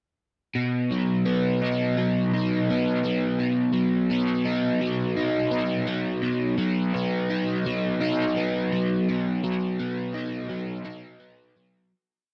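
A crunchy, bright overdriven electric guitar, double-tracked and up front with a rotary speaker effect, plays picked arpeggios alone over a single B chord from 0.6 seconds in this hazy, kaleidoscopic rock piece, set in a moderate plate reverb and fading out from 9.1 seconds.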